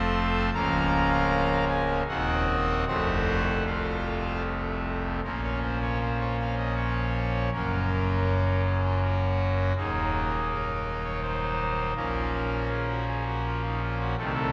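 In a flexible, rubato triple metre, this solemn, grave chorale-style classical piece is carried by a solo pipe organ on a brassy, bright trumpet stop, its romantic voicing placed up front and spanning from deep pedal notes to high treble. Its opening phrase settles onto F at 2.9 seconds, and a second passage begins at 5.2 seconds, moving through Bbm, Gb and Ebm before returning to Bbm. The organ sounds from further back in a cathedral, its wet reverb lingering long after each chord in this short cut from a longer work.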